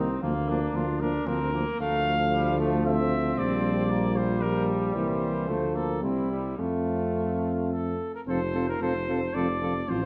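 Stately and warm, this short passage from a longer classical brass quintet unfolds in a flexible, rubato three-beat feel, with a new section arriving at 8.3 seconds. A mellow trumpet carries the melody above a flugelhorn second line, while a bright trombone and the French horn sit in the background as accompaniment and a soft-attacked, smooth-topped tuba stands up front on the bass. Each part sings with vibrato, and the trumpet and flugelhorn sound distant and roomy in the reverberant recital hall.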